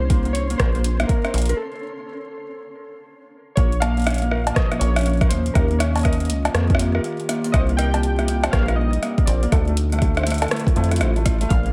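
A rubbery, saturated acid bass sits up front in this cerebral, melancholic IDM clip, its square-wave tone plucked through a resonant filter and sounding dark and deep. A booming analog drum machine, re-recorded in a large room, supplies cowbell, rim click and metallic hats over a swung 16th-note feel, while a separate electronic kick adds a deep, produced thump from a small room. Above them, warbling lo-fi synth keys carry the melody with a detuned, full-bodied pulse-and-sawtooth sound, coloured by chorus and tape echo, and a felt-muted upright piano plays soft, intimate arpeggios through dub echo. A flickering, granular texture opens the clip before giving way at 1.6 seconds to a break, after which the harmony settles back in at 3.6 seconds. From 4.2 seconds, a nostalgic, tape-like pad adds slow-attack sustained chords in the background, its chorus and built-in reverb set against a mix that carries little overall reverb.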